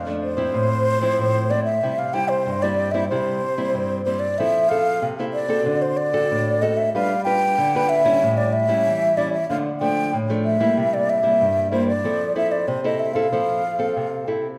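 A straight samba rhythm in 4/4 carries this short, playful passage, lifted from a longer piece and full of joyful energy. A small, dark nylon-string guitar sits up front, fingerpicked as accompaniment from the opening moment to 14.6 seconds and ranging from low bass notes to its upper register. A mellow concert flute takes the melody from 0.2 seconds, airy and hollow in tone, tongued with vibrato and placed close to the listener in a high, narrow range. The harmony moves from a rootless Bbmaj7 through Fmaj7 and C, then travels a chain of dominant chords, D7, G7 and A7, before passing through Dm and C7 to settle on Fmaj7 at 12.0 seconds. A reverberant recital-hall ambience surrounds the pair, giving the recording the spacious sound of a church or concert hall.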